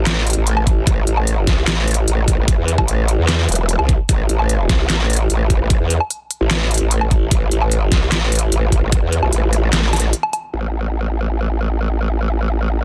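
The sound is dense, dry and heavily limited, with everything pressed close and forceful in a modern master. This is a heavy, chaotic wobble dubstep excerpt in A minor at 149 BPM, riding a half-time 4/4 feel and opening straight into a drop. A growling, formant-filtered bass leads from the start, its sine-based tone saturated, compressed and thickened with chorus and overdrive, with a fast attack and sustained, wobbling notes low in the register. A layered electronic drum kit sits up front with a deep snare, crisp hats, handclaps and woodblock, all given a tape-warm softness by low-pass filtering, while a knocking electronic kick joins at 0.7 seconds. During a brief break the kit drops out at 10.4 seconds, leaving the aggressive bass alone until the clip ends at 12.8 seconds.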